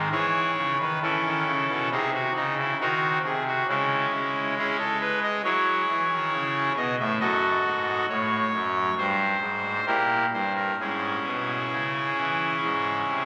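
A pipe organ on its trumpet stop carries this grave, solemn classical chorale alone for the full 13.3 seconds, its brassy, bright baroque voicing and audible chiff sitting up front. The rubato phrasing moves through dark minor and diminished harmonies before arriving on a major chord at 12.6 seconds, all steeped in a long, wet cathedral reverb with an added club reverb on top. Captured on a phone in the room and compressed, the sound has a dulled upper end, and this short fragment is cut from a longer piece.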